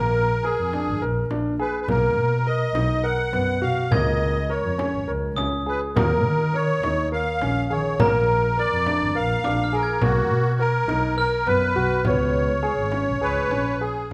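Contemporary chamber music in a pensive, hypnotic 7/8 at 207 BPM (eighths), cut from a longer piece, where a reedy, shimmering musette accordion carries the melody up front over arpeggios from an intimate concert grand piano with audible action noise and long sustain, a dark, woody bowed double bass with vibrato, a small, bright frame drum played with soft hands entering at 0.7 s in the background, and a metallic, bell-like glockenspiel struck with brass mallets that returns at 3.9 s, all set in a moderate recital hall reverb over chords moving from Bb7 through Bmaj7 and Bbm/Db to Db5.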